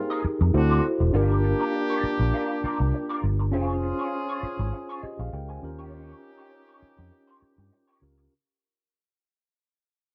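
Soul at 100 BPM with a smooth, silky mood, cut from a longer piece and fading out across its 8.3 seconds, where a mellow tine electric piano carries the chords from Fm11 through Gm7 to Eb7, a distant, roomy horn section with light vibrato adds stabs, a slightly broken-up, lo-fi electric guitar plays a riff through wah and ensemble chorus, and a dark, foam-muted fingered electric bass sits round and up front, all in a dry, close 1970s-style studio recording with small room ambience.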